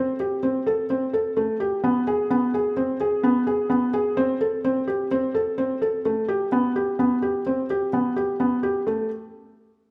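A quick 128 BPM pulse in 5/4 with a straight feel drives this short contemporary instrumental in A minor, cut from a longer piece, its mood urgent and restless. A felt-muted upright piano plays solo from 0.0 to 9.1 seconds, staying between A3 and A4, its soft, intimate tone sitting up front with short sustain and audible action noise. A moderate recital hall reverb of about 1.5 seconds gives the piano the natural air of a church or concert hall, and a brief new section arrives at 8.9 seconds.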